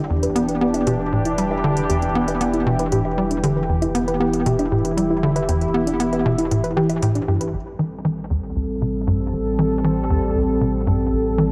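Ambient, sequencer-driven space music in E minor at 117 BPM, expansive and mysterious, opens on Em7 with an evolving, detuned sawtooth pad sustaining chords up front while a punchy, nasal sequencer bass drives a riff with analog delay, a deep sine sub bass anchors the low end, and a soft, round pluck plays arpeggios with chorus in the background. Metallic electronic hi-hat and woodblock sit low in the mix through a lush hall reverb. At 7.5 seconds the harmony moves to Am7 as the pluck and percussion stop, and a filter sweep on the synth bass carries this cut from a longer piece to its end at 11.5 seconds.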